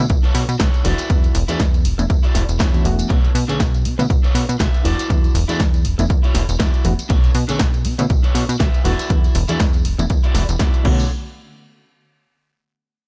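A mix with little reverb opens this funky, groovy slice of filtered disco house at 120 BPM, swung on the sixteenths and cut from a longer piece, riding a drop that runs to 11.1 seconds over alternating Bm9 and E9sus4 chords. An up-front, tape-warm electronic kick and a punchy analog drum machine playing snare, hi-hat and crash lead the rhythm, joined by a tambourine with egg shaker and group handclap, while a plucky sawtooth-and-square analog bass with a filter pluck and fast attack pumps beneath. A reedy, clean electric piano through its built-in speakers adds phased chords, and a dark, slightly broken-up picked electric guitar with gritty 12-bit sampler texture plays the riff, with sidechain pumping on the piano, guitar, bass, hats, cymbals and tambourine.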